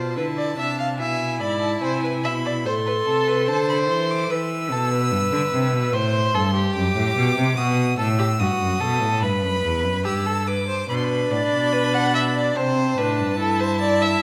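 In a straight 4/4 pulse, this cut from a longer baroque-style fugue for string quartet moves with joyful, elegant poise. A clear, focused first violin with vibrato carries the high melody over a smooth, up-front second violin line, while the cello anchors the bass with a rich bowed tone. A distant, even-toned viola accompanies from the start, drops out at 4.3 seconds and returns at 10.9 seconds as a new section begins, with the quartet set in a moderate scoring-stage reverb.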